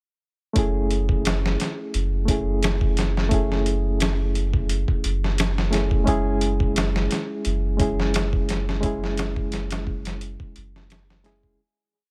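A reedy electric piano opens the piece at 0.5 seconds, lightly overdriven and heard through its built-in speakers, holding rootless chords with syncopated pushes, colored by tremolo and tape echo. Almost at once, at 0.6 seconds, a soft dub sub bass and a dusty soul sampler-style drum kit join to set up a brooding, smoky trip hop groove at 87 BPM in 4/4, with a slight 16th-note swing in F# minor. The drums sound like a compressed, gritty looped breakbeat with edits, re-recorded in a small room and overdriven, with a thumpy kick, a medium-tuned snare and hi-hat sitting up front. Underneath, the deep, round sub bass sustains long gliding notes on F#, its triangle and square-wave tone soft but with a fast attack. The harmony moves from F#m9 to C#m/F# at 6.1 seconds, the dry, close sound carrying little reverb. A fade-out begins at 7.9 seconds, and the piece ends at 11.6 seconds.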